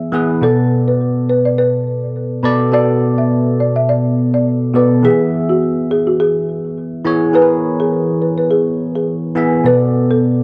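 Smooth and mellow, this short afrobeats excerpt in B dorian moves at 104 BPM with a gentle sixteenth-note swing, its harmony shifting from Bm7 to E at 5.0 s and back to Bm7 at 9.7 s. A bright, bell-like tine electric piano carries the accompaniment up front, clean and direct under a phaser. A woody folk marimba with medium mallets sings the melody from 0.4 s, its hardwood bars sounding dry and rustic with a boxy small-room character. Both parts carry the color of cassette tape, and a moderate spring reverb gives the home recording its soft, lived-in glow.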